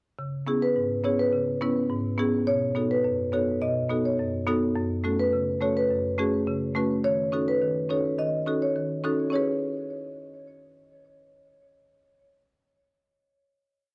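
Up front and mid-forward, a marimba played with medium mallets on padauk bars carries this short, hypnotic and sultry dancehall piece, striking close-voiced off-beat chords from 0.2 seconds onward across a range from F#2 to B4. At 0.6 seconds a second marimba enters on rosewood bars with soft mallets, its round, airy and mellow tone carrying a syncopated hook between B4 and D#5, colored by tape echo. The piece moves at 105 BPM in a straight 4/4 in C# minor, with the harmony passing through C#m7, B7, F#m and D#m7b5 before settling on C#m7 for a final chord at 9.3 seconds. The accompaniment marimba has a woody, warm character, while the overall sound is dry and gritty, like a hardware recording in a small room. It is a complete piece, a single chorus closed by that last chord.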